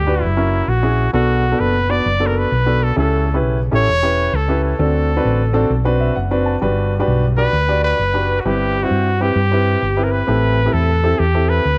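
A hopeful, uplifting stretch of uptempo gospel with a swung eighth-note lilt, cut from a longer piece and set in a dark production with light reverb. Up front, a jazz-style solo trumpet carries the melody with vibrato, scooped notes and a smooth top, while an intimate concert grand piano, deep in the bass and carrying audible action noise, supplies vintage accompaniment and a brief fill at 5.7 seconds. Beneath them a hollow-body short-scale electric bass, played with the fingers, sounds round, amped and punchy as the chords travel from F#7 through Bm7 and D7 toward Gmaj7 and Am7.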